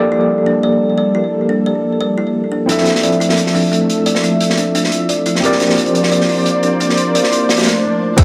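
Lush and melancholic, this liquid drum and bass passage at 175 BPM, cut from a longer piece, opens on a barky, overdriven tine electric piano with medium tremolo and digital delay, a thick, warbling detuned sawtooth pad with chorus, sidechain pumping and a filter sweep, and woody, ringing kalimba arpeggios softened by a low-pass filter and delay, moving through Gm9, Fmaj7 and C9sus4. At 2.7 seconds a crunchy, saturated breakbeat kit enters up front, its gritty snare and hi-hats rolled off at the top. A brief electronic swell and impact arrives at 7.7 seconds ahead of a short break, and at 8.2 seconds a tight, up-front electronic kick and metallic electronic hi-hat land, all set in a moderate plate reverb with studio ambience.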